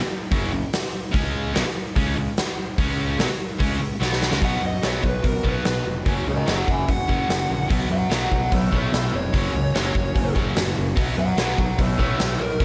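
The recording has a big arena sound, set in a lush hall reverb that gives this short excerpt from a longer classic rock piece a swaggering, sunny glow at 146 BPM in a straight 4/4. From the start, a bright, scooped, double-tracked distorted electric guitar picks out a power-chord riff over a dark, round fuzz bass with an overdriven edge, moving from F#5 to C#5. The huge acoustic drum kit comes in at 0.3 seconds with a punchy kick, medium-tuned snare and hi-hat sitting up front in a natural big-room space, and a drum fill from 4.0 seconds leads into the next section. At 4.4 seconds a dark, smooth overdriven lead guitar begins a picked solo with slapback echo, while the chords alternate between B and F#. Behind it, a boxy, shimmering fingerpicked twelve-string acoustic guitar with a swing feel and octave doubling adds slapback-echoed accompaniment in the background.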